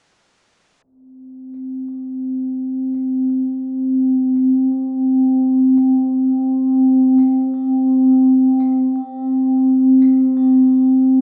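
Trip hop at 85 BPM in 4/4, with a light swing on the sixteenths, this short cut from a longer piece carries a smoky, brooding mood. A warbly, tape-like pad enters at 1.5 seconds and holds sustained chords centred around C4 until 11.2 seconds. Its detuned square-wave and triangle tones, touched by ring modulation, chorus and its own reverb, swell in slowly and linger with a long release. The pad sits up front and sounds dark and nostalgic. Tambourine and triangle add a faint acoustic, live-room shimmer far in the background until 10.5 seconds. The whole recording has the worn, warbling pitch drift of old cassette tape, with light small-room reverb and a filter sweep running through it, all beneath a dull, low-passed ceiling.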